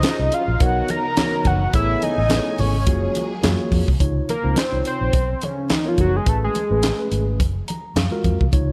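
Early-eighties boogie funk with a smooth, danceable groove, built on a tight, dry drum kit with a high-tuned snare and handclaps, a dark, round, punchy muted electric bass, and hard-handed congas in the background. A fat sawtooth analog lead with vibrato and tape echo sits up front, carrying the melody and taking a solo from 4.0 s over mellow tine electric piano chords. Lush bowed strings hold soft sustained chords until 4.0 s, and the electric piano adds a fill at 7.4 s in this cut from a longer piece, which carries a touch of lossy compression artefacts.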